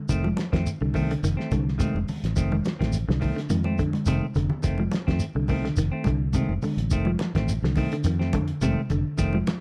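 A dark, clean semi-hollow electric guitar opens with arpeggios bathed in spring reverb, and a second hollow-body guitar soon adds picked stabs over an F7 chord in F mixolydian. This joyful, hypnotic afrobeat groove moves at 106 BPM in a straight 4/4, driven by a round, up-front fingered bass and a cloth-damped, muffled drum kit with a fat snare, tight kick, hi-hat and a gritty fill from 3.5 to 4.6 seconds. Thick-skinned congas sit in the background beside a grainy shekere, all captured in a dry, close 1970s-style small-room sound in this short cut from a longer piece.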